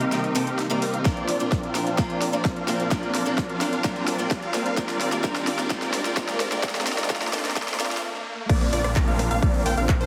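A straight 4/4 pulse at 129 BPM drives this triumphant, euphoric festival progressive house cut in Bb major, where a punchy electronic kick joins at 1.1 seconds beneath an overdriven big-room kit with a huge snare, handclaps, rim clicks, hi-hats and crashes building a drum fill. Sidechain-pumped supersaw chords, huge, phased and bright, carry the riff up front through a filter sweep, while an airy unison pad, a boxy picked parlour acoustic guitar and a background riser thicken the build-up over Cm7, Bbadd9 and Ebadd9. After a brief stop, the drop lands at 8.5 seconds with a wave-folded unison pluck playing delayed arpeggios and a thick, saturated detuned saw bass, all under a heavily compressed radio sound and moderate scoring-stage reverb.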